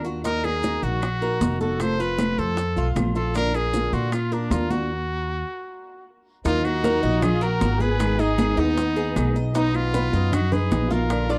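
A dry, close 1970s-style studio sound in a small room frames this sultry, danceable Cuban son and guajira at 155 BPM in Eb harmonic minor, where a bright, vibrato-laden trumpet sings the melody up front over a thumpy, gut-strung upright bass, a dark thumb-plucked flamenco guitar, and a metallic Cuban tres picking arpeggios through tape echo, while saturated high-tuned congas, round low-tuned bongos, grainy maracas and very quiet, distant woody claves keep the percussion in the background, the band hits a stop from 4.9 to 6.5 seconds, and a soft-attack, sul tasto chamber violin section slips in at 6.4 seconds with an intimate second line.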